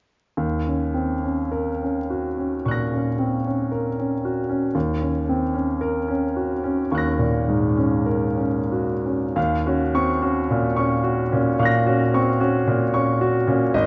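A brilliant, up-front grand piano opens this nocturnal, mysterious fragment of impressionist classical solo playing, drifting in slow, free rubato across a register from Ab1 to Bb6 and shifting into a new section at 9.4 s before breaking off at 13.9 s, heard through the lingering bloom of a recital hall and a dark, warm production flecked with vinyl crackle.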